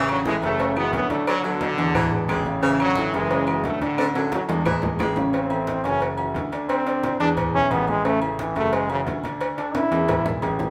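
A straight 4/4 salsa groove at 177 BPM drives this sunny, danceable cut from a longer piece, with ringing agogo bells and timbales up close, tight high-tuned cowbell and bongos, low-tuned congas and woody, band-limited claves tucked in the background, while a woody upright piano comps and a polished baby grand piano carries the bass line. A tight, up-front trombone section states the melody over a mellow, breathy baritone saxophone second line until about 5.1 seconds, riding through a drum fill that begins at 4.0 seconds. At 5.3 seconds a punchy, close-miked solo trombone with vibrato takes over the lead, all of it sitting in a wet large-studio reverb that sounds like a band playing live in one room.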